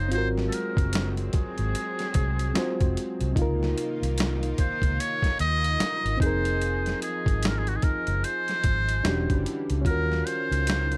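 R&B with a neo-soul lean, this soulful, introspective 11-second excerpt moves at 74 BPM in 4/4 with a 60% swing on the sixteenths. A trumpet with a metal mute carries the melody up front, its thin, buzzy tone touched with vibrato and a smooth top in a jazz solo style. Beneath it, a reedy, clean electric piano plays accompaniment, while a lush, detuned unison pad with slow attack, long release and chorus holds thick sustained chords. A dark, foam-muted fingered electric bass sits round and punchy in the foreground, and a gritty, pitched-down sampler-style boom bap kit with a thumpy kick, medium-tuned snare and hi-hat enters at 0.1 s, its sound re-recorded in a large room. The harmony moves from Ab7 through Db69 and Fm7 before sliding from Em9 to Ebm9 near the close, all in a dry mix with little reverb.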